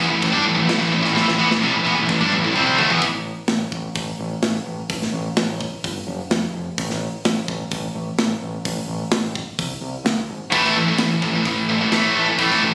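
An up-front, bright, high-gain guitar riff, doubled by a second distorted guitar further back, drives this heavy, relentless metal excerpt in A minor at 128 BPM in straight 4/4, falling away at 3.0 seconds after a drum fill and returning at 10.5 seconds, while a growling, round overdriven bass plays throughout and a tight acoustic kit with a medium-tuned snare and rolled-off top keeps time, the mix carrying light reverb and compression with the sound of a phone recording in the room.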